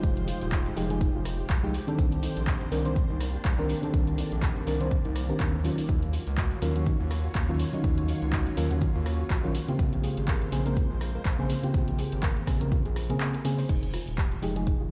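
An up-front, tape-warm electronic kick with a deep, layered punch drives this moody deep house excerpt at 123 BPM in 4/4, with a 56% swing on the sixteenths and a key of F minor. Around it, a punchy analog drum machine, re-recorded in a small room, adds crash cymbal, handclaps, hi-hat and rim click, while a grainy, bright cabasa sits in the background. A round analog bass, built from square and sine waves with a wave-folded, evolving character and a fast attack, pumps against the kick alongside a mellow FM electric piano that plays dark, warbling stabs with chorus and delay. Deeper in the mix, a silky string machine holds slow-attack chords with ensemble chorus, and a gentle, full-bodied pluck traces arpeggios through lush chorus and delay, both breathing with sidechain pumping. The harmony moves through Fm9, Cm9, Ebm9 and Bbm9 during the drop, then returns to Fm9 at 13.7 seconds, where the strings and cabasa drop out for a brief closing section, all set in a large studio reverb that sounds like a big system in a bare room.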